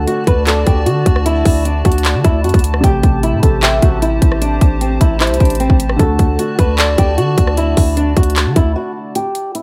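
This menacing, hard-hitting trap excerpt at 152 BPM in a half-time feel, tuned to A4 = 438 Hz, sets a thumb-plucked acoustic flamenco guitar melody with finger squeaks, softened by a low-pass filter and delay, over a worn baby grand piano in the background and a hollow, flute-like pad with slow attack and chorus, moving from D to Am7 and back to D. An up-front trap kit with a hard-clipped kick, metallic hats, handclaps and rim clicks sits alongside a punchy, heavy 808-style bass with a noise layer, while a velvety, vibrato-laden synth lead surfaces briefly early and again from 3.6 to 7.2 s. The sound stays dry and close, and after a short break at 8.8 s the kick drops out for the final moments.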